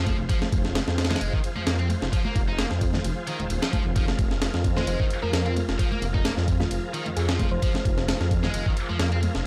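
A gritty, raw breakbeat excerpt at 131 BPM in F minor, where a compressed, thumpy sampler-style drum kit with a high-tuned snare and ride sits up front beside a deep, rumbling detuned saw bass, while a scooped high-gain guitar riff with tube saturation and analog delay, shouting tonewheel organ chords through overdrive and fast rotary speaker with sidechain pumping, background congas with hard hands, and a round, tine-like synth pluck melody with telephone tone arriving at 4.8 seconds fill out a dry hardware recording over a single Fm chord.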